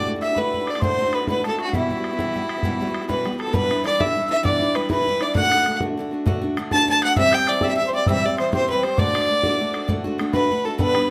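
A 12/8 Celtic slide gives this short, driving and spirited folk excerpt its lift, with a biting, earthy fiddle carrying the melody up front while a breathy metal whistle with a crisp chiff sits in the background, a shimmering, ringing hammered dulcimer adds a very quiet second line, a bright, boxy picked steel-string acoustic guitar accompanies up front, and a damped, tight bodhran keeps time in a moderate studio ambience as the tune moves into its second section at 3.5 seconds.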